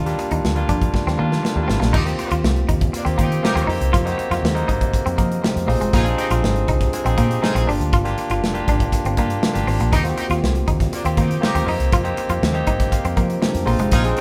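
A barky tine electric piano, lightly overdriven through a combo amp and sitting up front, carries the accompaniment in this breezy, urban slice of polished 1980s jazz-funk pop, adding its own fill near the close at 12.4 seconds. A bright, twangy clean guitar riff and a dark, round, foam-muted fingered bass ride over a punchy studio drum kit whose pumping room sound builds to a fill that leads into the main groove at 1.9 seconds. At that point a distant horn section with light vibrato joins on a second line, and the band plays together in a moderate stone room over smooth seventh, sixth and suspended ninth chords.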